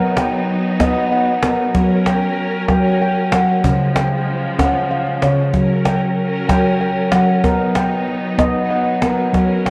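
A worn, warbling cassette-tape sound with drifting pitch hangs over this gentle, dreamy world piece, set in a reverberant recital hall with a touch of small-room ambience, cut from a longer work. At a meditative 63 BPM in 6/8, an up-front handpan of nitrided steel rings out mellow arpeggios under soft fingertips, while a distant, lush string section holds bowed, biting chords with vibrato and a woody cajon with faint snares joins at 0.2 seconds. The harmony moves through B, F#, C# and back to F# and B.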